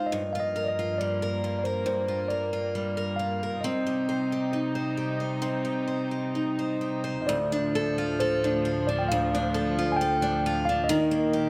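Close, detailed microphones and a light reverb give this short cut from a longer Celtic folk piece an intimate, clear sound. It is a slow air at about 67 BPM in 4/4, played with a free, rubato feel and a haunting, mournful mood. A clean tine electric piano, heard through its built-in speakers, carries the melody, while an up-front picked steel-string acoustic guitar provides the accompaniment in a warm concert tone. Beneath them, a studio string section enters at 0.1 s with floating, sustained chords, bowed sul tasto with a soft attack and a pure ensemble blend. The harmony moves from Gm7 to Cm, then shifts at 7.3 s into a second section on Dm before settling on a rootless Cm7.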